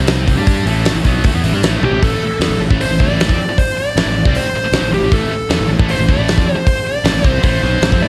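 A scooped, double-tracked high-gain guitar riff and a fuzz-soaked, growly fingered bass open this menacing, driving hard rock excerpt at 155 BPM in 4/4, with a big acoustic drum kit joining at 0.1 seconds. The kit sits up front in a big room, its fat snare, tight kick, hi-hat and toms giving a mid-forward punch. At 1.8 seconds a drum fill ushers in a dark, distorted lead guitar, picked and placed up front, carrying the melody over the riff. The harmony moves from C5 and A5 power chords into a steady A minor as the second section takes hold at 2.0 seconds. Studio reverb adds space, while the overdriven bass stays punchy beneath the bright rhythm guitar.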